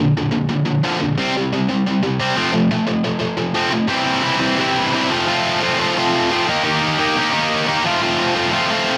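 Energetic and rowdy, this straight-ahead punk fragment features a lone tight, bright, double-tracked electric guitar picked up front through distortion, ranging from Bb2 to G4 over chords moving Bb, C5, F, C, F, Eb and back to F, with an echo-chamber reverb and a layer of vinyl crackle giving the short cut a gritty, roomy edge.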